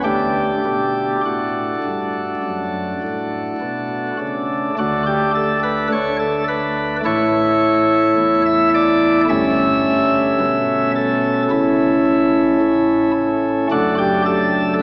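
A chamber organ with sparkling, chiffy flute stops plays alone, bright and up front, through a serene, reverent chorale-style classical excerpt in D major at a slow, rubato 50-55 BPM, its light voicing spanning a low F#1 to the treble and moving from D through A and A7/G to D/F# at 13.7 seconds, bathed in a long church reverb and tinged with vinyl crackle and a small-speaker sound.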